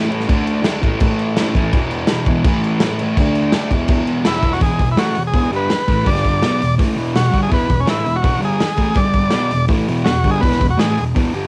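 Raw and swaggering, this short garage rock cut from a longer piece charges along at 165 BPM in a straight 4/4, with a home-recorded, cassette feel and a small room's light reverb around it. A dark, double-tracked fuzz guitar drives the riff from the start, its picked, distorted tone sitting up front as it moves through power chords like D5, A5 and E5. A crunchy breakbeat drum kit joins almost at once, gritty and saturated with a rolled-off top, a punchy kick, a medium-tuned snare, hi-hat and dusky crash cymbal. At 4.3 seconds a vintage combo organ enters with the melody, buzzy and overdriven with heavy vibrato, just before the second section begins at 4.6 seconds, where the chords shift toward G5 and E. The organ drops out at 11.0 seconds as the guitar and drums carry the cut to its end.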